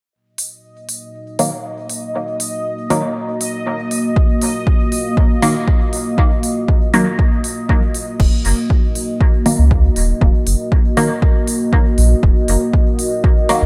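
A dark, hazy mix in light reverb opens this nocturnal dub techno excerpt in Eb minor at 119 BPM, where a bubbling, resonant stepped-filter texture and a moody, full-bodied analog pad with chorus and sidechain pumping sit beneath bright, detuned dub chord stabs coloured by phaser and dub echo. Filter sweeps move across both the pad and the stabs through the opening stretch, while a deep house kit adds smooth hats and crash cymbal, and a punchy, up-front electronic kick arrives at 4.2 seconds. At 8.2 seconds the bubbling texture drops away and a round sine sub bass enters, pumping under the sustained Eb minor harmony.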